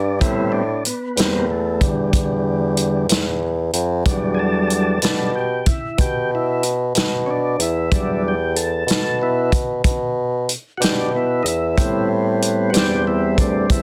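Soulful and brooding, this slow blues excerpt in E minor moves at 62 BPM in 12/8 with a straight feel, with a smooth, key-clicking tonewheel organ taking the solo in sustained chords through a slow rotary speaker over Am9 and Em9 harmonies, while a mellow bassoon with light vibrato and a soft attack carries the bass line in classical style and a vintage acoustic drum kit with punchy kick, medium-tuned snare and hi-hat enters at 0.2 seconds from a small natural room, the whole kept up front under light reverb in a dense, heavily limited modern master.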